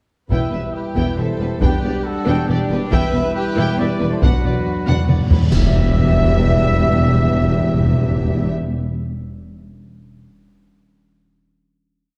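Heavy-stick taiko strokes, close and dry, drive this dark, epic orchestral film cue in three, pounding from the opening until 5.6 seconds. Beneath them a woody double bass section, a focused cello section and a vintage tuba hold a low foundation, with the cellos running a bass ostinato, while articulate hard-mallet timpani strike single bass notes and roll into the louder passages. A shadowy, distant violin section carries the theme with portamento and vibrato, the second violins doubling it in thirds and unison, as close, soft-attacked violas work a rhythmic ostinato and roomy French horns sustain chords in the background. Trumpets add stabs with light vibrato, and cymbal swells, crashes and concert bass drum strokes gather toward a huge, low impact. At 5.5 seconds the band hits an accent and settles onto a final sustained chord, bathed in a moderate scoring-stage reverb.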